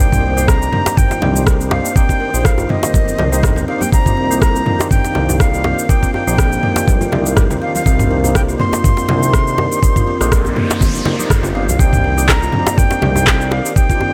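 Hypnotic and warm, this afro house excerpt moves at 122 BPM in 4/4 with a light sixteenth-note swing, sitting on a single Cm7 chord in C minor. A knocking electronic kick drum sits up front, joined by an overdriven, layered deep house kit of handclaps, rim click, shaker and toms, while ringing congas and, from 0.4 seconds, a tight, cracking djembe played with soft hands fill the background. A smooth synth bass with a fast attack and gentle vibrato carries the low end through tube saturation and sidechain pumping, stopping at 13.6 seconds. Over this, a breathy, bright jazz flute leads the melody with a crisp, chiffy attack, reedy edge, vibrato and delay, while a buzzing, woody kalimba plays mellow arpeggios and a lightly overdriven tonewheel organ adds percussive stabs through chorus vibrato and a slow rotary speaker. A very quiet, dark analog pad holds sustained chords underneath, and an electronic noise sweep passes between 10.2 and 11.8 seconds in a mix kept dry with little reverb.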